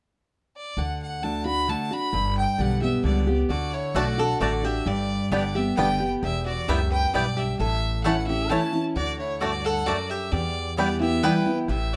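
Joyful and lively, this bluegrass cut from a longer piece moves at 132 BPM in 3/4 in D major, opening with a clear, focused bowed fiddle carrying the melody with light vibrato, joined at 0.8 seconds by a full-bodied, up-front picked jumbo guitar with audible finger squeak and a woody, thumpy pizzicato upright bass on gut strings. From 3.5 seconds a metallic, nasal slide resonator guitar adds a second line, followed by bright double-strung mandolin stabs and a twangy, percussive fingerpicked banjo also playing melody as the chords move through D, G, Em and A. Close, detailed microphones and light reverb keep the ensemble crisp and present.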